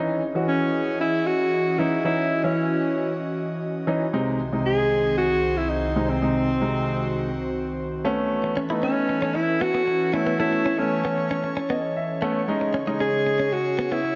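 Bittersweet yet confident, this pop excerpt moves at 115 BPM in a straight 4/4 feel in C# minor. A breathy alto saxophone carries the melody from 0.5 seconds, sitting up front with light vibrato and a distant, roomy quality, its line touched by delay. Beneath it, a baby grand piano with long, natural sustain plays the accompaniment up front and adds a fill from 11.4 to 12.5 seconds, while an airy pad with a detuned, noise-layered sawtooth and triangle blend holds sustained chords through a chorus effect. At 8.4 seconds a clean, picked electric guitar, recorded direct and compressed, slips in with a riff in the background, shimmering with lush chorus. The harmony moves from C#madd9 through G#/B# and Aadd9 to a G#sus4, all set in a moderate plate reverb within a dark, warm production that rolls off the top end.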